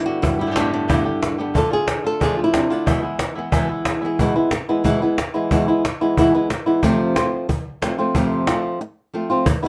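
The recording sits in light reverb, with a fingerpicked lead guitar up front alongside a snappy cajon that is also up front and carries a live-room sound. This is a dramatic, intense flamenco passage in 4/4 with a straight feel, cut from a longer piece. The acoustic lead guitar carries the melody throughout, its tone warm and close. A second fingerpicked flamenco guitar adds chordal stabs, with audible finger squeak, until 4.2 s. The cajon, with its snares rattling, drives the rhythm from the opening moments. The harmony moves from Gadd9 through Dm and E to F, and a brief break arrives at 8.8 s before the excerpt closes.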